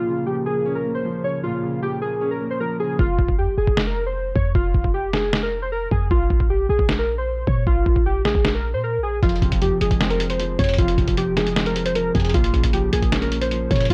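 Hip hop and trap in F minor at 154 BPM with a half-time feel, this melancholic, hard-hitting cut opens on warbling, detuned synth keys carrying a nostalgic melody over a boxy grand piano and a moody, chorused analog pad sitting in the background. At 3.0 seconds the pad and piano drop out as a boomy, sine-based 808 bass and an up-front, pitched-down sampler kit with a thumpy kick and fat snare arrive. At 9.2 seconds the hi-hats join and the piano returns. A dry, gritty hardware character and digital ambience frame the whole piece.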